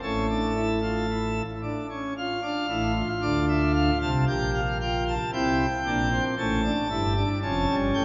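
Steeped in a church's long, wet reverberation and rolled off above 8.0 kHz, this fragment of a serious, driving baroque-style four-part fugue in D minor moves at 57 BPM in straight 4/4, tuned to A4 = 442 Hz. A solo pipe organ sits up front on a full, brilliant plenum with mixtures and a romantic voicing, spanning F1 to A5 as the harmony passes from A through Dm and Gm/Bb to A7.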